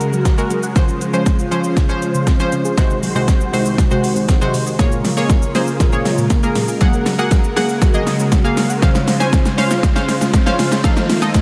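A straight pulse drives this energetic dance-pop build-up, with the pop drum kit playing a continuous fill throughout. Its punchy kick, fat snare, metallic hats and shaker are overdriven and sit up front in the mix. A bright analog pluck, also up front, carries the accompaniment with a chorused, evolving sawtooth tone, a noise layer, a filter sweep and sidechain pumping. Beneath it, a soft supersaw holds smooth, full-bodied sustained chords through an ensemble chorus and the same pumping, moving from Gbadd9 through Dbmaj7, Ab7/C and Bbm7 before landing on F7. A very quiet, dark, round pluck adds gentle detuned arpeggios from 0.1 seconds, while an electronic downlifter and riser sound briefly at the opening and return at 8.9 seconds. A lush hall reverb soaks the whole dreamy, driving mix, and the passage is cut from a longer piece.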